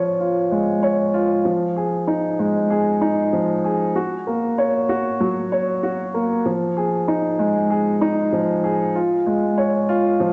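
A straight, even 4/4 pulse carries this brief electronica excerpt, cut from a longer piece, and its mood is luminous and tender. A solo upright piano plays alone for the full 10.3 seconds, sitting up front in the mix with a dark, woody tone and long, mellow sustain. Its lines stay in a middle register, between F3 and Db5. A wet recital-hall reverb with a 1.5-second tail gives the piano a sense of space, while the warm production keeps the top end rolled off above 8.0 kHz. At 6.5 s a new section begins, and a build-up runs from there to the close at 10.3 s.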